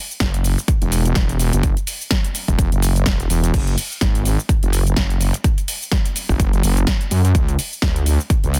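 A swung 4/4 groove at 126 BPM drives this gritty, aggressive bass house excerpt, with a punchy, tape-warm electronic kick sitting up front from 0.2 seconds and a big-room dance kit of punchy snare, metallic hi-hats, cabasa and crash cymbal entering at 0.1 seconds. A heavy, saturated, detuned sawtooth wobble bass, treated with chorus and overdrive, ranges from E1 to F#2, pumping through sidechain compression and sitting up front in the mix. The sound is dry and dense, with a heavily limited modern master.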